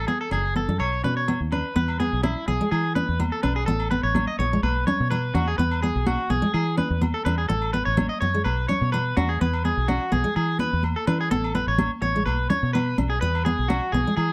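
Joyful and danceable, this highlife guitar band passage is cut from a longer piece. Up front, a twangy, slightly broken-up electric guitar plays arpeggios with slapback echo over a round, dark, foam-muted fingered bass, while a woody, full-bodied fingerpicked steel-string acoustic guitar with old strings supplies accompaniment. Ringing, band-limited agogo bells arrive at 0.3 seconds and high-tuned, soft-handed congas at 1.8 seconds, both in the background, in a dry, close 1970s-style studio sound.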